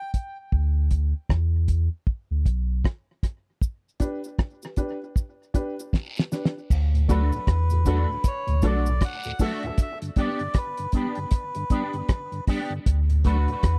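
Laid-back and spacious, this dub reggae excerpt rides a cloth-damped, thuddy drum kit with a fat snare and tight kick beside a round, deep sub bass, while a dark, worn upright piano drops woody stabs through tape echo, cabasa and guiro flicker in, and from 7.1 seconds a reedy, breathy melodica melody joins a flute-like tonewheel organ on slow rotary speaker and a clean electric guitar with an envelope filter, all in a dry, close 1970s-style studio sound.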